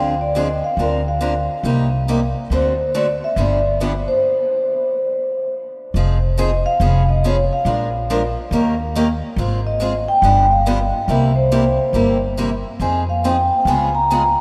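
Acoustic string swing in the jazz manouche style, this fiery, virtuosic fragment of a longer piece sets a mellow, ringing soft-mallet vibraphone melody over a bright, boxy picked archtop guitar and a growly, woody pizzicato upright bass, with the guitar and bass up front, all bathed in a wet cathedral reverb that makes the vast space echo, a shift to new harmony arriving at 5.9 s, and lossy compression artefacts colouring the sound.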